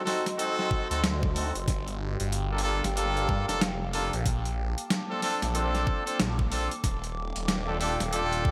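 Gritty and playful, this glitch hop excerpt in G minor moves at 93 BPM with a swung 16th-note feel, as a warbling, nostalgic tape-like pad with chorus and built-in reverb holds sustained chords beside brilliant, punchy horn stabs roughened by 12-bit sampler grit and digital delay, both pumping from sidechain compression. An overdriven boom bap sampler kit of hi-hat and pitched-down snare with gated reverb starts at 0.1 s, a knocking electronic kick joins at 0.7 s, and a thick, swirling phased saw bass enters at 0.9 s. The chords pass from D7b9 through Gm7 and Bbmaj7 to Ebmaj9#11 under a moderate plate reverb and a bright 1980s-style digital sheen.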